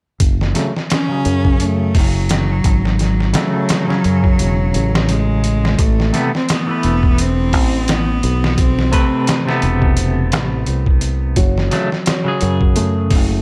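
This trip hop excerpt moves at 86 BPM in 4/4 with a swung sixteenth-note feel in F# minor, setting a hypnotic, melancholic mood. Gritty, pitched-down sampler-style drums with a thumpy kick, a medium-tuned snare and hi-hat sit up front, their tape-warm compression touched by studio reverb. A growly, punchy fingered electric bass sits beside them. A bright, clean, picked electric guitar supplies accompaniment through tremolo and a low-pass filter that sweeps across the whole passage. From 0.9 seconds until 9.3 seconds, a single bowed cello carries the melody with rich vibrato and a smooth, even, close tone, trailed by dub echo. At 11.4 seconds a felt-muted upright piano adds soft, dark, vintage arpeggios, also echoed, as the harmony returns from Amadd9 to F#m, and the mix overall stays dry.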